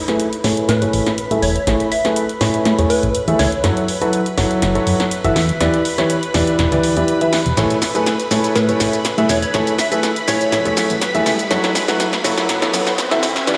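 Piano house at 122 BPM in A major, euphoric and uplifting, built as one long build-up with a drum fill and filter sweeps on the up-front clear concert grand piano riff and the shimmering string machine chords, over punchy dry analog drum machine hi-hat, shaker and snare, a fat saturated analog bass entering at 0.4 s, a catchy plucky unison lead with phaser and tape echo, and a riser from 8.5 s, all moving through Amaj7, F#m7 and Em7 in a lush hall reverb.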